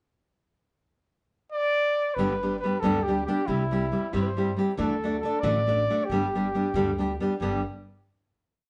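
A live, one-room recording with a wet studio reverb and a softened top end frames this short, proud and romantic mariachi piece in G major, swaying in 6/8 at 92 BPM, where a mellow trumpet with light vibrato and a soft attack opens alone at 1.5 s with a classical, motif-based melody in period phrases, joined at 2.2 s by an up-front nylon-string guitar, fingerpicked with fresh strings, finger squeak and chop strumming on open chord shapes through G, C and Dadd9, and by a woody pizzicato upright bass playing root and fifth on the main beats, before all three settle on a final G chord.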